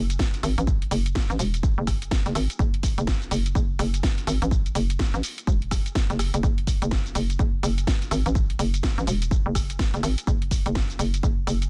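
A dense, heavily limited modern master with digital ambience frames this gritty, bouncy bass house excerpt, cut from a longer piece and running about 11.7 seconds at 125 BPM in F# minor, with a 61% swing on the sixteenths and tuning set to A4 = 438 Hz. Up front sits a hollow, knocking FM bass with a fast attack and decaying notes, moving between E1 and A1 under tube saturation and sidechain pumping that give it a punchy, springy push. A punchy electronic kick, layered and tape-warm, re-recorded in a small room, also sits forward in the mix and is the loudest of the drum parts. Behind it, a garage drum kit adds a cracking snare, bright hi-hats, rim clicks and shaker, sitting lower in level. The bass begins at the very start, the kit follows at 0.1 seconds and the kick at 0.2 seconds. All three carry a single section, with the kick dropping out at 11.4 seconds while the bass and kit run through to the end.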